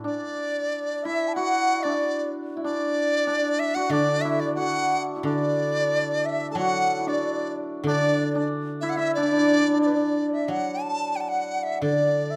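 Festive and graceful, this brief cut from a longer Chinese traditional chamber piece moves at 92 BPM in a rubato 2/4 in D gong mode, with a mellow, buzzing bamboo dizi carrying the melody up front over a shimmering hammered dulcimer and a very quiet, breathy, reedy xiao as second lines, while a silvery guzheng played with fingerpicks rings low in accompaniment, sounding briefly at the start and returning at 3.9 seconds, all captured with close, detailed microphones in a moderate recital hall reverb before the melody shifts into a new section at 10.5 seconds.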